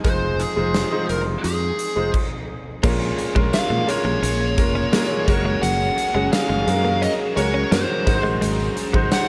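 A moody, nostalgic 1980s-style pop passage in Bb minor at 86 BPM, cut from a longer piece, where a dark, fuzz-distorted lead guitar carries the melody over a clear concert grand piano, a growly fingered electric bass, and a huge arena drum kit with gated reverb, punchy kick and bright cymbals up front, while an ethereal pad with ensemble chorus and phaser sustains chords in the background. After a brief stop from 2.1 to 2.8 seconds, the band returns on Bbm7 and three more parts join: a scooped high-gain guitar with lush chorus sitting in the background, a very quiet direct-recorded clean guitar riff, and a faint jingly tambourine. The chords move from Fm7 through Bbm7 and Gbadd9 to Ab7.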